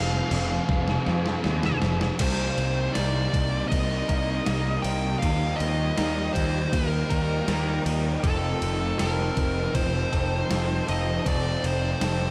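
A dreamy mix soaked in huge ambient reverb opens this blissful shoegaze and dream pop excerpt at 80 BPM in F mixolydian, where a gated 80s digital drum machine with a thumpy kick and gated reverb snare enters at 0.3 s and plays a fill before the chords shift to Cm7 at 2.2 s. A punchy, overdriven fuzz bass anchors the low end beneath a dark, background fuzz guitar riff with ensemble chorus, and a lo-fi, slightly broken-up guitar through a small old amp adds a fingered riff washed in reverse reverb. A very quiet, double-tracked sludgy guitar drops out at 2.2 s, while a smooth, overdriven lead guitar carries the melody through delay over the Ebadd9 and F7 changes.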